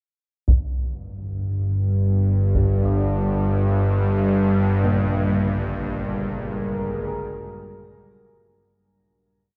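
A tense, string-like bowed drone with a detuned, ring-modulated edge sits up front from 1.1 seconds in this unsettling dark ambient drone piece in free time, opened by close, dry taiko hits struck with heavy sticks, while soft bronze carillon bells ring through delay in two slow loops of unequal length drifting against each other from 2.9 seconds, and a deep, moody pad with chorus adds sustained, slowly shifting chords from 6.0 seconds, the whole piece sitting in a wet cathedral reverb with a cassette-tape character.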